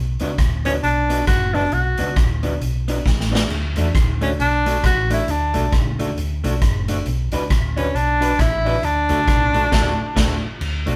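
A breathy tenor saxophone carries the melody up front in this upbeat, joyful ska excerpt, its whispered, intimate tone marked by vibrato, scooped notes and a soft attack, entering at 0.7 seconds and singing until 10.4 seconds. Beneath it, a hollow-body short-scale electric bass plays fingered lines with a dark, round, amped sound, starting alone at the very top before the band joins. An electric guitar through a small old amp supplies picked accompaniment with a slightly broken-up edge, while a street-band drum kit sits up front with a boomy kick, medium-tuned snare, rim clicks, hi-hat, crash and dark cymbals in an airy, polished space. The swung groove rests mostly on D major, moving to B minor and back to D near the end, with a drum fill at 3.1 seconds and a band accent closing out the passage. The whole group sounds like it is playing live in one room, bathed in a short, wet studio reverb.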